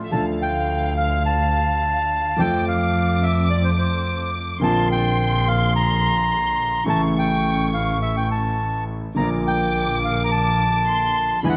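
This tango unfolds at a rubato, melancholic and sultry pace in a short excerpt cut from a longer piece. A reedy bandoneon sits up front carrying the melody, while a warm, smooth violin section plays an even, bowed second line above it with vibrato. A clear concert grand provides the accompaniment with deep bass and long sustain, and a single bowed double bass adds a rich, expressive bottom with a soft attack and portamento. At 9.2 s a dark, woody string section slips in with very quiet stabs and light vibrato as the harmony, having moved from Dm through F, Bbadd9 and A, arrives on Bb. Close, detailed microphones capture the players inside a moderate scoring-stage reverb.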